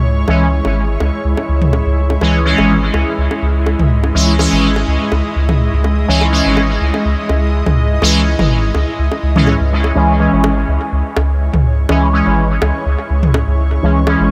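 Nocturnal and cavernous, this dub techno excerpt moves at 124 BPM in C# minor with a gentle swing, resting on a single C#m chord. A round, deep sub bass sits up front from the very start, and juicy, detuned polysynth stabs with a resonant filter sweep, chorus, phaser and dub echo join at 0.3 seconds together with the layered electronic bongos and toms, also carrying dub echo. Behind them a cloudy granular pad holds slow-blooming, blurred chords bathed in its own reverb, all in a lightly reverberant space.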